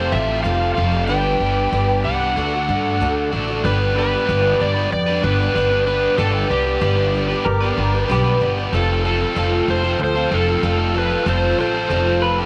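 Hopeful and open-road in spirit, this short rock excerpt moves at 94 BPM in a straight 4/4, centred on G mixolydian with chords shifting from Fadd9 through G and D before returning to Fadd9 at 8.7 seconds. An overdriven slide guitar carries the melody, its tone warm and fingered, while a biting, bright overdriven guitar sits up front with a double-tracked riff. Beneath them, a picked twelve-string acoustic guitar adds dark, boxy, octave-doubled accompaniment, woody and shimmering on old strings, and an upright bass played pizzicato gives a growly, steel-strung low end near the front. A musette accordion holds reedy, airy sustained chords in the background. At 7.4 seconds an electric guitar through a small old amp joins with a second line, slightly broken-up, lo-fi and compressed, all heard in a light, small-room reverb.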